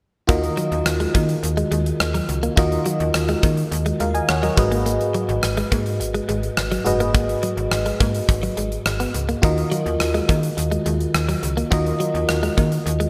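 Urgent and dramatic, this 1980s-style pop passage pairs a glassy, bell-like FM electric piano with chorus and a snappy, metallic slap-like FM bass alongside a bright, compressed riff on a directly recorded clean electric guitar treated with analog chorus and delay, while a polished gated drum kit of tight kick, hi-hat and rim click sits up front in a lush hall reverb as the harmony moves from Ebmadd9 to Abm7 at 4.6 seconds and back.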